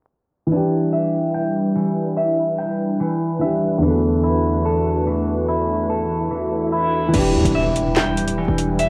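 Ominous and menacing, this cassette-toned drill hip hop fragment in half-time opens with a dark, boxy concert grand piano, a hollow, flute-like warbling pad and a clean, scooped electric guitar playing arpeggios through tape echo, set beneath a filter sweep and vinyl crackle in a small room, before a background electronic swell at 6.0 seconds leads to an impact at 7.1 seconds, where a punchy, sine-based 808-style bass and a drill kit with a woody snare, metallic hi-hats, handclaps and crash cymbal come in.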